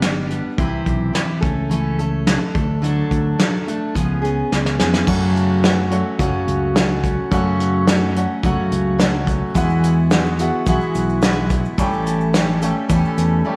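This folk rock and heartland rock excerpt opens with a picked steel-string acoustic guitar, full-bodied and up front, with audible finger squeak and a slapback echo, joined from the start by a round, punchy fingered electric bass and a soft brush drum kit with a medium-tuned snare, tight kick, hi-hat and crash cymbal. The mood is jangly and warm in a straight 4/4, with the chords moving from G through C and A/C# to D and C#7 before a drum fill leads into the second section at 5.1 seconds. There a clear upright piano enters higher up, woody, boxy and slightly detuned, with long sustain and its own slapback echo, sitting a little behind the guitar as the harmony turns to F#m. At 9.6 seconds a grainy, bright tube shaker slips in quietly in the background as the chords shift to Eadd9 and then A7. A moderate recital hall reverb wraps the band in a big arena sound.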